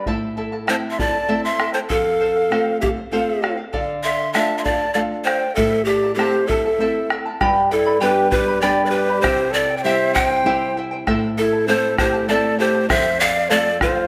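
A moderate recital-hall reverb gives this short Andean folk excerpt an open, resonant space, with the pan pipes sitting close and up front. In A minor at 98 BPM in a straight 3/4, the mood is melancholic and wistful, moving from Am through F and Dm before the second section turns to G and C and settles back on Am and F. The charango opens the piece at once, fingerpicked on shimmering double strings with some octave-doubled courses, joined a moment later by a small, warm, fingerpicked nylon-string guitar and a deep, dark bombo heard in a live room. At 0.7 seconds the large cane pan pipes take the melody, breathy and reedy with tongued notes, a chiff on the attack and vibrato. A wooden end-blown quena enters at the same moment as a second line, its crisp attack and bright, breathy vibrato reaching up to C6 above the pipes.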